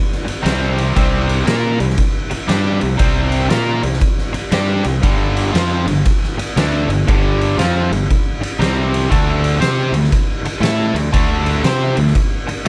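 An overdriven, double-tracked electric guitar drives a picked riff up front through this raunchy blues rock and southern rock power-trio excerpt, swinging at 118 BPM in 4/4 over power chords moving from C5 to G5 and back through C5 to D5. An oversized, low-tuned drum kit pounds alongside it, also up front, with a boomy kick, fat snare and dark ride cymbal in a pumping stone room, its sound saturated and gritty. A fuzzed, fingered electric bass adds a growly low end, all under light reverb.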